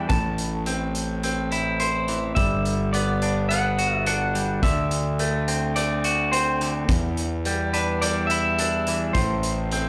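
A straight 4/4 pulse at 106 BPM drives this cinematic, soaring post-rock excerpt in G major, tuned to A4 = 441 Hz and cut from a longer piece, with the band playing live in one room. A loose indie acoustic drum kit enters at 0.1 s with hi-hat and a punchy kick, its small-room, mid-forward sound sitting up front. A fuzz fingered electric bass, direct and amped and overdriven, holds the low end with a warm, fuzzy edge. A bright, clean electric guitar picks arpeggios through Am, Gmaj7, D7, Em7 and back to Am, while a second electric guitar at the edge of break-up carries the melody with a twangy, scooped, slightly broken-up tone. A moderate large studio reverb with a 1.2 s decay lends the room a spacious glow.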